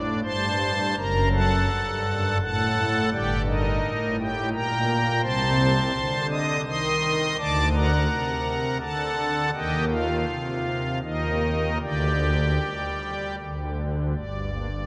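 A solo pipe organ on soft, shimmering string and celeste stops opens this grave, dark classical chorale-style excerpt in G minor, moving in a rubato 3/4 at roughly 74-86 BPM through romantic voicings that span from deep bass notes to high treble, sitting up front in a cathedral reverb with a 5.1-second decay before settling on G minor at 14.2 seconds.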